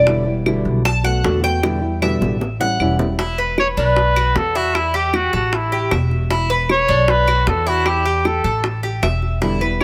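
A bright, metallic Cuban tres opens this sunny excerpt of Cuban son and guajira, its picked double strings taking a solo turn in arpeggios up front. Beneath it, a dark, thumb-plucked nylon-string guitar plays classical-style accompaniment while a growly, thumpy pizzicato upright bass sits up front. Round, low-tuned bongos and dry, woody claves tucked in the background set a straight, lively pulse, with a drum fill from 1.6 seconds. At 3.6 seconds a punchy, vintage-toned trumpet with vibrato steps forward to carry the melody in a pop-style solo. The guitar drops out at 3.2 seconds, just before the horn's entry, and returns briefly at 9.4 seconds, while a light reverb gives the band a gentle sense of space.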